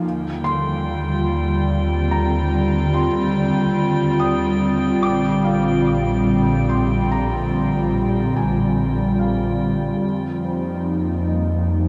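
Melancholic and serene, this ambient fragment in 3/4 drifts through Ebadd9, Bb7 and Fm under a huge, dark reverb with a nearly eight-second tail. An airy, breathy pad with a chorused, detuned sheen sits up front, holding soft sustained chords, while a dark, woody double bass section bowed sul tasto with vibrato anchors the low end. Soft felt-muted upright piano arpeggios, intimate and mellow with audible action noise, float high in a diffuse delay and fade out by 10 seconds, and a glassy, drifting harmonics texture glows from 0.2 to 10.1 seconds.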